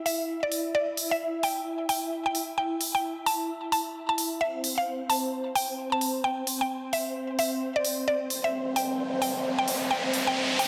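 UK garage in a bouncy, sunny two-step vein at 131 BPM with a swung 16th feel, built on a silky, vintage string machine holding sustained chords through ensemble chorus, a woody, round mallet-like synth pluck carrying the melody with chorus and tape echo, and crisp electronic hi-hats, all up front in a lush hall reverb, before an electronic riser enters at 8.5 seconds in this excerpt from a longer piece.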